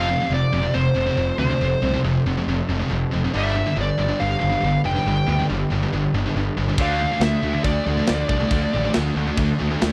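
A smooth, overdriven lead guitar carries the melody up front from the start, over a growly fuzz bass, two bright, scooped high-gain guitars playing a distorted riff in the background, and a lush, very quiet symphonic string section holding sustained chords, in this dark, relentless heavy metal passage cut from a longer piece. The harmony moves from F to G to D minor, and a tight, gritty drum kit with crash cymbal, kick and snare enters at 6.8 s, while the lead melody stops at 8.9 s. The sound is dry and close, like a 1970s studio recording.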